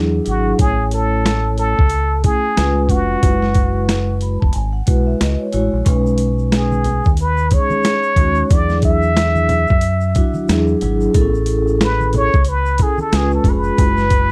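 Mellow soft-mallet vibraphone chords with slow motor vibrato and a round, dark fingered electric bass open this relaxed jazz-hop excerpt at 91 BPM in B mixolydian, joined at 0.3 seconds by a gritty, compressed boom bap drum kit with a thumpy kick and a plunger-muted trumpet soloing up front with wah-wah, light vibrato and scooped notes, while the vibraphone adds a fill at 3.9 seconds and bright, soft-handed tube shaker and congas settle into the background from 5.9 seconds in a dark, dry production.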